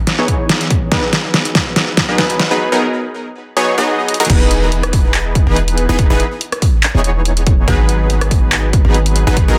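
A dubstep drum kit opens this bright, lush future bass excerpt at 142 BPM in E major, its deep snare, handclaps, rim clicks, hi-hat and crash cymbal sitting up front through a drum fill. A detuned, sawtooth supersaw stab, sidechain-pumped with a filter sweep and digital delay, builds over Emaj7 and G#m7 chords alongside a punchy electronic kick and a boomy, sine-based 808-style bass with a noise layer. After a second drum fill at 4.1 s, the drop lands at 4.3 s, carrying on the half-time, lightly swung feel, with both drum parts re-recorded in a large room and the mix dense and heavily limited.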